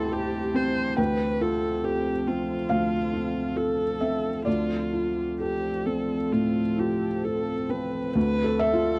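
The recording is dry and close, captured in a 1970s-style studio with little reverb. This short cut from a longer neoclassical piece for piano and strings unfolds in 4/4 at 64-70 BPM with a rubato feel, in D dorian tuned to A4 = 438 Hz, and its mood is reflective and longing. A felt-muted upright piano sits up front, soft, mellow and intimate, with its action noise audible. A single bowed viola, also up front, plays sul tasto with vibrato in a dark, woody tone. Behind them, at a lower level, a deep ambient pad holds sustained chords, a warbling, vintage blend of sawtooth and sine with a sub octave, slow attack and long release, coloured by chorus and its own reverb. All three parts play throughout the 9 seconds as the harmony moves from C/D to F/D, then to Dm7 at 4.5 seconds and Dmadd9 at 8.2 seconds.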